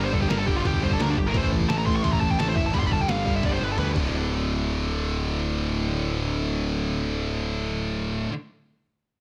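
Heavy, relentless heavy metal at 173 BPM in a straight 4/4, cut from a longer piece, where a picked, bluesy overdriven lead guitar solo with tape echo soars over two bright, high-gain riffing guitars (one scooped and set in the background) and a growly, up-front fuzz bass. A compressed, pitched-down trip hop sampler-style kit with a thumpy kick and muffled tone drives the first 4.0 seconds, ending in a fill, before the two riffing guitars and bass carry on into the next section, all in a light reverb.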